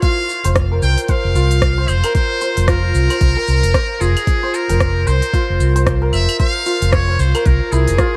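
A swung 16th-note groove at 113 BPM in 4/4 drives this hypnotic organic downtempo piece in F harmonic minor. A soft electronic kick and a crisp, tape-warm kit of claves, hi-hat, rim click and shaker lay the beat, and from 0.5 seconds a dark, round fretless bass with ensemble chorus sits up front. A bright, shimmering santur plays ringing arpeggios with tape echo, while a trumpet with metal mute carries the melody in a buzzy, thin, distant tone with light vibrato and its own tape echo, all in a dry mix cut from a longer piece that opens on an F5 chord and runs 8.2 seconds.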